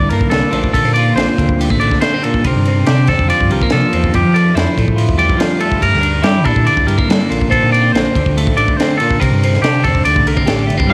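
Math rock and midwest emo at 142 BPM in a straight 4/4, this wistful, intricate cut from a longer piece layers a bright, compressed twelve-string electric guitar's accompaniment under twangy, scooped arpeggios from a second clean electric guitar, both up front with a cassette-tape character, over Gmadd9, Bbmaj9, C9sus4 and Fmaj9 chords. A dark, round, overdriven fingered bass holds the low end while a crisp fusion kit with a punchy kick, high-tuned snare and ride cymbal pumps in a small room. At 10.9 s, shortly after the harmony lands on D5, a biting, double-tracked overdriven guitar riff appears in the background, all set in light studio reverb with a home-cassette feel.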